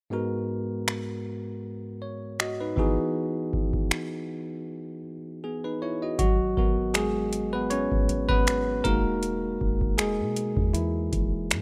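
A booming analog drum machine sets a slow, swung 16th-note groove at 79 BPM in 4/4, entering at 0.9 seconds with a deep kick, metallic hi-hat and finger snaps sitting up front. This short cut from a longer contemporary R&B piece in G# minor feels moody and sensual, moving between G#m7 and Emaj7. A bell-like tine electric piano carries the accompaniment from the opening moment, its tone bright, clean and direct. After a break at 4.7 seconds, the electric piano takes a solo at 6.2 seconds, just as a soft 808-style bass arrives underneath with a round, dark, sine-like low end that strikes quickly and then decays. The sound is dry and close, with the rough feel of a home demo mix.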